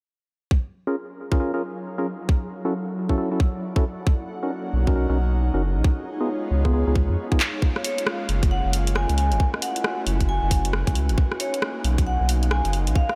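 A tight, up-front electronic kick opens this bouncy, soulful slice of two-step UK garage, its swung groove soon joined by hollow, organ-like stabs colored by dark chorus and analog delay. An ethereal, mellow pad drifts in behind them with ensemble chorus and sidechain pumping, and a second, breathy and bright pad adds sustained chords from around 4.2 seconds, also pumping. A deep, thick, saturated sub bass arrives shortly after, sitting up front under harmony that moves through major-seventh chords and a C#7 before turning to a minor eleventh and settling back on Bmaj7. A drum fill at 7.4 seconds brings in a layered garage kit of handclaps, hi-hat and rim click as the stabs fall away. A close-miked, dry vibraphone with medium hard mallets then carries the melody, its metallic, ringing tone trailed by analog delay, over a light digital ambience.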